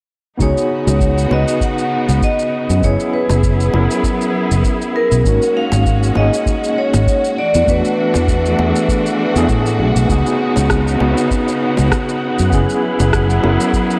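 Sunset chillout at 99 BPM in C# minor with a gentle 16th-note swing, smooth and warm in mood, where a ringing vibraphone melody with slow motor vibrato floats over a barky, gritty tine electric piano with tremolo and delay, clear bowed strings holding sus4 chords, an up-front bright fretless bass with chorus, a deep analog kick, an overdriven layered shaker and rim click, very quiet low-tuned bongos from 0.9 s, and an airy wind-like noise texture arriving at 11.7 s, all wrapped in a lush hall and the warble of worn cassette tape in this short cut from a longer piece.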